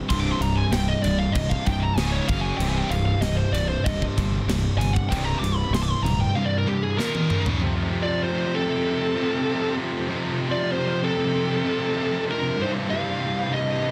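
Dark and heavy, this short heavy metal cut in C minor moves at 96 BPM in a straight 4/4, with a bright, distorted high-gain rhythm guitar, a double-tracked overdriven semi-hollow guitar and a very quiet scooped guitar stacking the riff while a growly, punchy fuzz bass sits up front and a tight-kicked acoustic kit drives it with crash, snare and toms. An up-front, dark high-gain lead guitar solos over the opening. The bass drops out at 6.2 seconds, and a drum fill at 7.0 seconds closes out the first section as the drums and scooped guitar drop away. From 8.0 seconds a bluesy overdriven lead guitar adds a second line in the background against the lead melody, all inside a dense, heavily limited modern master with light reverb.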